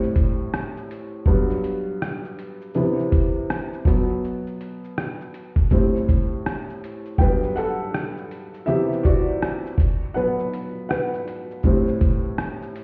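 A soft, felt-muted upright piano with audible action noise and short sustain sits up front through cassette tape, low-pass filtering and plate reverb, cycling Am7, Gmaj7, Cmaj7 and B5 in this mellow, nostalgic lo-fi hip hop excerpt, over a compressed, pitched-down sampler-style kit of thumpy kick, hi-hat, rim click and shaker, all heard as if muffled through a wall in a stone room with vinyl crackle.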